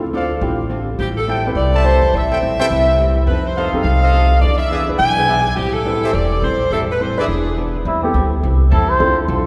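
A fast 4/4 swing at 210 BPM drives this sultry jazz excerpt in A minor, with a woody, thumpy pizzicato upright bass up front, a dark, clean hollow-body electric guitar comping, and an intimate grand piano with audible action noise in the background. A close-miked saxophone section carries the melody with soft-attack vibrato, punctuated by tight trumpet section stabs, until a veiled cup-muted trumpet takes a mellow solo at 7.9 seconds. A distant, bright saxophone section briefly holds chords at 8.7 seconds, all within a long, wet church reverb.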